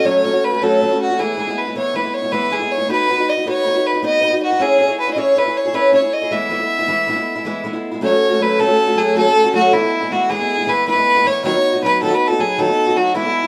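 Lively and rollicking, this short Celtic folk slip jig in 9/8 features a single bowed fiddle carrying the melody with a rich, intense tone and light vibrato. A picked, ladder-braced acoustic guitar with a boxy character and audible finger squeak plays accompaniment, both instruments sitting up front through a moderate plate reverb. The harmony moves from F# minor through E, B and C# minor, and a second section at 8.0 seconds returns to F# minor and ends on B over D#.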